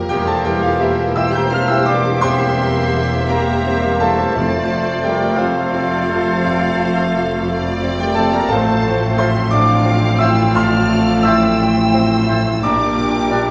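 A bright, brilliant concert grand piano sits up front carrying the melody with deep bass and long sustain, joined by a lush, vibrato-rich violin section in the background, while a second, more focused violin section, a hollow silver flute, a distant oboe and a very quiet clarinet carry second lines alongside bowed violas, an intense cello section and double basses. This lyrical, passionate classical passage in F major moves in a rubato 12/8 at 57 BPM, cushioned by a soft-attack bassoon and very quiet, tight sustained chords from a mellow, roomy French horn section and a clear trombone section, with timpani sounding on F from 4.4 to 5.3 seconds. A wet recital hall reverb and vinyl crackle frame this fragment of a longer piece.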